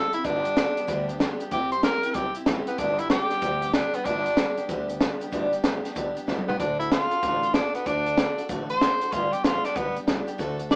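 A clear tenor saxophone with vibrato carries the melody from the very start, over a bright, full-bodied picked steel-string acoustic guitar, in this rowdy, rollicking rockabilly cut from a longer piece. The tune swings at a brisk 189 BPM in 4/4 and G major, moving from G to C, back to G, then to D at 6.6 seconds before settling on G again. A woody, thumpy upright bass with gut strings plays pizzicato in its low register, while a compact cocktail drum kit, dark and smooth with a high-tuned snare, punchy kick and rolled-off top, sits up front on hi-hat, kick, snare and toms. A short drum fill from 6.3 to 6.6 seconds leads into the D chord. The band sounds as if playing live in one room, with light reverb and a small-speaker character.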